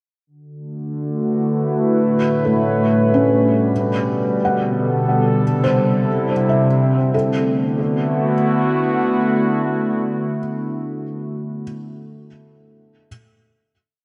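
A straight 4/4 pulse at an unhurried 70 BPM carries this weightless ambient piece in D major. A warbling, nostalgic tape-like pad sits up front with slowly shifting chords through D6, A7, Gadd9/B and Cadd9 under a filter sweep, while a very quiet analog drone with pulse-width modulation fades beneath it. From 2.4 s a felt-muted upright piano adds dark, intimate arpeggios with audible action noise, its four loops of unequal length drifting against each other through a diffuse delay, and a wet plate reverb soaks the dreamy mix as it settles on a final D6 chord at 7.1 s, with the piano's last notes lingering until 13.1 s.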